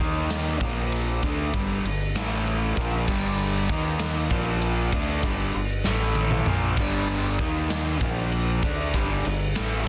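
A raw, double-tracked overdriven guitar sits up front, driving a picked riff through a cycling run of Eb5, Bb5, G5, A5 and Gm chords in G minor. Beneath it, a growling fingered bass adds punchy, amped grit, while a polished acoustic rock kit with bright cymbals, a medium-tuned snare and a punchy kick rings in an airy stone room and breaks into a fill at 5.9 seconds. This dark, cathartic slice of quiet-loud alternative rock moves at a slow 65 BPM in 6/8 with a straight feel, pressed into a dense, heavily limited modern master that is cut from a longer piece.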